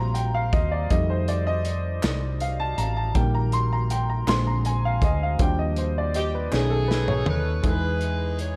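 The recording has a dark, warm production with little reverb. This short cut from a longer piece is a slow, jubilant and uplifting gospel number in Eb major and 6/8, moving at 54 BPM by the dotted quarter with a straight feel. A woody, slightly detuned upright piano with a worn character and long sustain sits up front and takes the spotlight as a solo. The chords move from Eb6 and F7 through Eb/Bb, Bb7 and Ebmaj7 before turning to B7 and Emaj7. Beneath it, a round, amped hollow-body electric bass holds the low end, and a soul drum kit with a punchy kick, medium-tuned snare, hi-hat and toms pumps in a small room. Very quiet, hollow group handclaps appear from 2.0 seconds, a clear, present saxophone section takes up the melody in pop style from 6.2 seconds, and the drums play a fill from 6.5 seconds.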